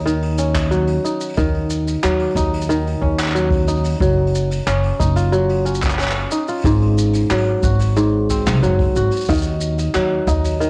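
Intimate and autumnal, this folktronica fragment moves at 91 BPM in Eb minor, with a ringing, crisp kora up front playing fingerpicked arpeggios through analog delay and plate reverb over a woody pizzicato upright bass. A small-room jazz brush kit with handclaps, hi-hat and shaker sits behind them, joined by a boomy kick drum in the background. At 9.3 s a delicate, tinkling music box adds an airy second line on a single high note, all captured as a home recording on cassette with light reverb.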